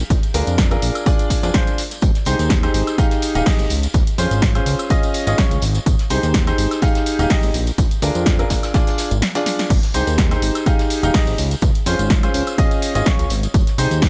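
Piano house at 125 BPM in Ab major, joyful and feel-good, with a lightly swung groove where a bright, vintage grand piano riff enters at 0.3 seconds up front with tape echo and sidechain pumping over a fat, detuned sawtooth bass that also pumps, a punchy electronic kick, a tape-warm analog drum machine of crash, hi-hat, snare, tambourine and woodblock re-recorded in a large room, a very quiet, muffled soul drum kit, and a background tambourine with maracas and group handclaps, all cycling through Bb7, Abmaj7 and Dbmaj7 with a drum fill at 9.5 seconds in this short excerpt of a longer piece.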